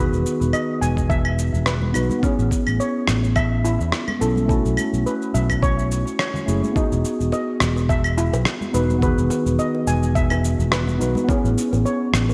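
Shimmering, metallic steel pan arpeggios played with hard rubber sticks, roughened by 12-bit sampler grit and delay, float over a mellow, clean tine electric piano with its own delay, a growly, up-front fretless bass with ensemble chorus, gritty overdriven electronic shaker, claves and rim click, a thumpy overdriven kick entering at 1.0 s, and very quiet soft-handed congas and bongos from 1.8 s, giving this smooth, blissful sunset chillout fragment a bright 1980s-style digital sheen inside a lush hall reverb.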